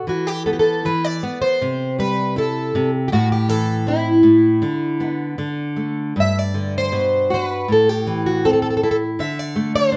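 Mournful and longing, this short fado fragment moves at 79 BPM in 2/4 with a rubato feel, its harmony drifting through C, Am, Gmaj7 and D5. A fingerpicked nylon-string guitar carries the accompaniment with a classical tone and audible finger squeak, while a plugged-in twelve-string acoustic guitar enters at 0.1 s to sing the melody in a full-bodied, shimmering, octave-doubled voice. Both guitars sit up front in a moderate studio reverb.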